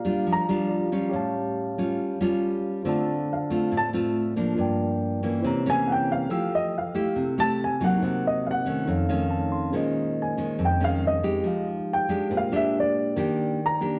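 Fingerpicked nylon-string guitar with a deep classical tone opens this romantic, breezy bossa nova excerpt alongside a clean, mellow tine electric piano, while a dark, up-front baby grand piano offers a brief melodic touch and then returns at 3.3 seconds to carry the lead over chords such as A7b13 and Fmaj9, the electric piano slipping in a fill at 8.9 seconds, with the music bathed in a lush large-studio reverb and a dusky, warm production.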